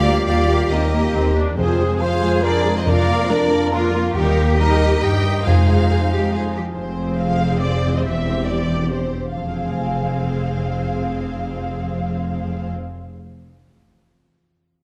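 This swashbuckling, adventurous stretch of heroic film score, cut from a longer piece and set in a triple metre, opens with most of the orchestra sounding together. Lush, focused symphonic violins carry the melody over a dark, soft-attack second violin line in the background, while smooth violas fill the middle. A close, clear cello section and an up-front double bass section anchor the bass. French horns hold sustained chords with light vibrato in the background, mellow, roomy trumpets add tight stabs, and a very quiet concert harp rings out fingerpicked arpeggios. Articulate timpani struck with hard mallets join at 1.6 seconds, and the horns and trumpets drop away at 6.5 seconds. The strings stop at 12.7 seconds, leaving the harp to ring on in a moderate scoring-stage reverb, with lossy compression artefacts in the sound.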